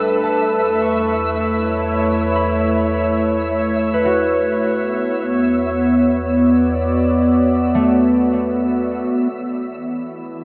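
Serene and reflective, this ambient passage drifts at 78 BPM in 3/4 and is cut from a longer piece, set in a vast, echoing space drenched in huge reverb. Up front, a warbly, tape-like pad with a nostalgic, lo-fi, detuned character holds mellow sustained chords with chorus, moving from A6/E to Bmadd9/E. Behind it, a ringing acoustic concert harp plays arpeggios through a delay, while a twinkling granular texture adds sparkling, octave-up shimmer high above. From 0.7 seconds a deep, ominous drone rumbles low and dark beneath everything else. At 9.5 seconds, after the rumble and the shimmer fade, a calm, organ-like drone with ensemble chorus enters softly for the closing moments.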